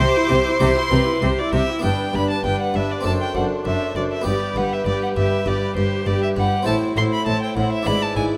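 Festive and brilliant, this baroque-style concerto excerpt sets an up-front solo violin with a focused vibrato tone over a very quiet violin section also carrying the melody and a background violin section on a second line, while a close, dry, round harpsichord and a smooth-topped viola section fill the accompaniment, a distant, lush cello section and a clear double bass section carry the bass, and a moderate recital-hall reverb surrounds the passage as the harmony moves from C through G and D7/F# to Am and E7/G#.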